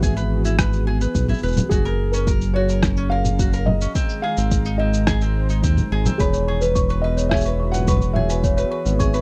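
A dry, close recording with a 1970s studio intimacy carries this pastoral, warm folktronica excerpt in a straight 4/4, where a felt-muted upright piano sings the melody in a soft, boxy tone touched with tape echo over a smooth, warbling vintage pad thickened by chorus. A bright, fingerpicked tenor ukulele spins light arpeggios, while a round, dark analog bass sits up front beside a deep electronic kick and a muffled, overdriven layer of sampler-style shaker, rim click and congas. At 6.2 s a delicate, bell-like celesta enters with a sweet, airy second line, also bathed in tape echo.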